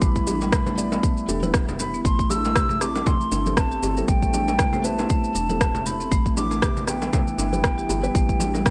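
Light reverb and a small-room ambience frame this hypnotic afro house excerpt at 118 BPM in A minor, where a punchy, tape-warm electronic kick sits up front with a layered shaker and rim click, while round, low-tuned bongos and ringing congas stay in the background from 0.3 seconds. An airy, hollow jazz flute carries the melody with delay over a woody FM bass, dark padauk marimba arpeggios and muted felt-piano stabs roughened by 12-bit sampler grit and delay, all three pumping with sidechain. Behind them a detuned, warbling analog pad holds sustained chords with lush chorus and the same pumping, moving from Em to Am9 at 2.0 seconds and back to Em at 6.1 seconds.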